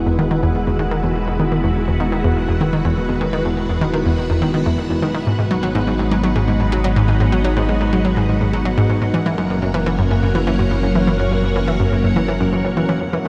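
Lush string-machine chords with ensemble chorus, a deep, dark analog bass and a bubbling, resonant filter texture fading in from the background begin this excerpt of cosmic, expansive sequencer-driven space music at 124 BPM. From 0.1 seconds a bright, detuned analog pluck riff with chorus and tape echo sits up front, all of it moving through Eadd9, G#m7 and F# in a vast, echoing cathedral reverb with a cassette-tape sheen.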